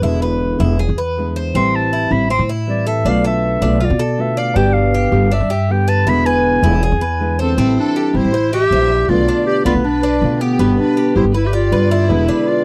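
Latin piece in A minor at 159 BPM, danceable and sultry, with a fingerpicked nylon-string guitar and the metallic, double-stringed arpeggios of a Cuban tres over a woody, growly pizzicato upright bass that sits up front. At 1.6 seconds a soft-attacked, classical-style clarinet enters with a solo melody, and at 7.4 seconds a lush, bowed violin section adds a vibrato-rich second line over the cycling E7, Am7, Bm7b5 and G changes. The sound is dry and close, like a 1970s studio session, and this is a cut from a longer piece.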